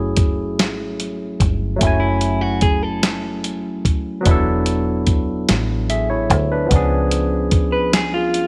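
A slow, sultry six-eight R&B groove with a late-night feel, cut from a longer piece, built on a barky tine electric piano whose overdrive and phaser give its bright chords a light, driven edge over a round, punchy fingered dub bass. A dusty soul sampler-style drum kit sits up front with a thumpy kick, a medium-tuned snare and hi-hat, its compressed, tape-warm sound carrying the air of a large room. A dark, clean picked electric guitar adds a second line from 2.0 to 4.0 seconds and again at 7.7 seconds, while the chords move from F#m9 through E7sus4 to C#7b9 under light digital reverb.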